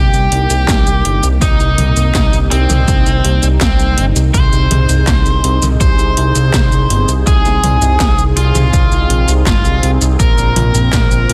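A straight 4/4 pulse at 82 BPM drives this moody, cinematic synthwave piece, cut from a longer track, with the electronic pad drums entering at 0.1 seconds and a punchy, tape-warm electronic kick arriving at 0.7 seconds. The 80s-style kit brings handclaps, metallic hi-hats, shaker, toms and a gated snare, with gated reverb on the snare and toms and a short room on the clap and hats. Underneath, a fat, detuned analog bass sits up front between G1 and C2, thick and mellow with a fast attack and sidechain pumping. A swirling, evolving analog pad holds sustained chords through phaser and chorus, its slow attack and long release breathing with the same sidechain pumping. Over it, a bright, overdriven electric lead guitar carries the picked melody between C4 and C5, trailed by delay, as the harmony moves from Cm7 to Ab at 4.3 seconds and on to Bbsus2 at 10.2 seconds. The mix is dry, with a dense, heavily limited modern master.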